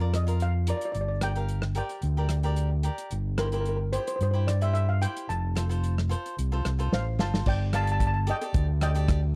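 A shimmering, metallic steel pan carries the melody in this sunny, festive calypso, struck with hard rubber sticks and heard in a boxy small room, its line sitting between Bb4 and A5 at a straight 111 BPM in 4/4. Beneath it, an overdriven fingered electric bass sits up front with a dark, round, amped tone, while a crisp, bright picked cavaquinho fills in the accompaniment. A soul drum kit with a tight kick, medium-tuned snare, rim clicks, hi-hat, crash and dark cymbals keeps the groove, its rolled-off top adding to the vintage character. The harmony moves from Bb through Gm, C/G and F, and a drum fill from 6.9 to 7.5 seconds leads into a new section opening on Gsus2. The whole short excerpt has the dry, close feel of a 1970s studio session with a small room reverb, and it is cut from a longer piece.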